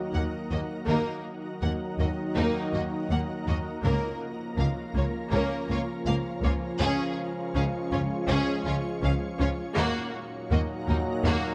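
At a steady 81 BPM in a straight 4/4, this short cut from a hybrid orchestral and electronic film score in Eb minor moves slowly through its chords, from Eb minor to Bb minor over Db at 3.8 seconds, to Db major, and back to Eb minor at 9.8 seconds, with a vast, relentless mood. The violins carry the melody with a smooth, lush, vibrato-rich tone, while a second violin line and a focused, close-sounding viola section sit in the background beneath it. Cellos and double basses anchor the low end on the bass line, the basses rich and expressive and the cellos sounding more distant. A mellow French horn section and a tight trombone section with light vibrato hold sustained chords in a classical style. A shimmering, ethereal pad adds detuned, granular sustained chords with an octave-up shimmer, chorus and its own reverb. The mix is close and detailed, with light reverb, and the brass, upper strings and pad play through to the end at 11.5 seconds, while the cellos and basses stop just before, at 11.3 seconds.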